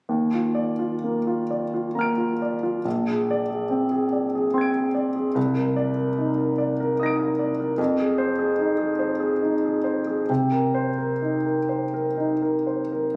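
A clear, intimate grand piano opens this dreamy, hazy impressionist solo fragment, cut from a longer piece, drifting in a rubato 6/8 through lush Ebsus2, Bb9, Cm9, Fm7 and Cm7 harmonies that range from deep bass to high treble over 13.2 seconds, its up-front, present tone carrying audible action noise and sitting in a moderate hall reverb captured on a phone in the room.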